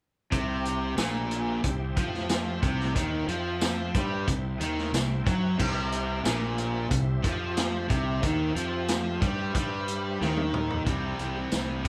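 A live band playing together in one large studio room, with moderate reverb, gives this driving, confident classic rock excerpt at 91 BPM in 4/4 its sound, set in C mixolydian and opening on a C chord. Up front, a bright, picked distorted guitar riff sits beside a mid-forward vintage drum kit with a punchy kick, dark cymbals, tambourine and toms; a round, fuzz-soaked fingered bass anchors the low end, while a compressed second overdriven guitar riff and a full tonewheel organ sit in the background, the organ holding sustained chords through a slow rotary speaker and chorus vibrato. A drum fill from 10.2 seconds leads into a brief new section at 10.9 seconds, and the organ stops at 10.8 seconds.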